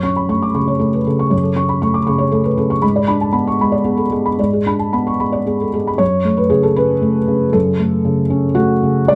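A felt-muted upright piano plays alone in this short neoclassical minimalist fragment, its dark, intimate, vintage tone softened by thick felt and sitting up front with the soft clatter of its action audible. In F# minor and a rubato 3/4 around 110-122 BPM, it moves from F#m to G#dim at 2.8 seconds before a new section returns to F#m at 6.0 seconds, spanning F#2 to D6 with a melancholic, reflective mood. Close, detailed microphones and light reverb shape the recording, and the piece is cut from a longer work.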